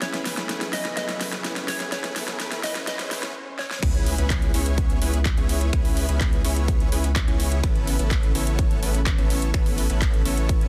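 A straight 4/4 pulse drives this euphoric, emotional festival progressive house cut, taken from a longer piece. It opens on a build-up, with the big-room drum kit playing a fill of huge snare, metallic hats, handclaps, finger snaps and crash cymbal under overdrive, while a hollow, bouncy square-wave pluck carries a short melody through chorus and digital delay. Beneath it, a lush, warbling unison pad holds sustained chords, and the big supersaw lead spells out an airy, detuned riff with sidechain pumping and delay, as a very quiet riser and swell build toward a brief break. At 3.8 s the drop lands with an impact, and a punchy, tape-warm electronic kick and a deep, saturated sine sub bass, also pumping, enter just as the pluck stops. The chords move from F#m through C#m7 to Aadd9, and the dense, heavily limited master sits in light reverb.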